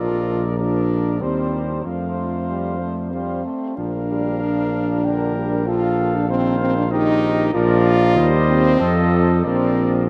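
A classical brass quintet opens all at once in a stately triple time, with a vintage-toned trumpet carrying the melody high above a gently vibrating flugelhorn that plays a second line from a distant, roomy position. Beneath them, a close-miked French horn with soft attacks and vibrato sits prominently in the accompaniment, while a brilliant but very quiet trombone adds distant inner support, and an up-front tuba anchors the bass with a mellow tone. The harmony moves calmly around the home chord and its neighbours, settling on a dominant seventh before resolving home at 9.5 seconds. A huge, long-tailed reverb places the ensemble in a vast, echoing hall and gives the whole passage a glowing, ceremonial breadth. The trumpet and flugelhorn fall away at 9.9 seconds, leaving the lower brass to sound on briefly until the fragment ends at 10.1 seconds.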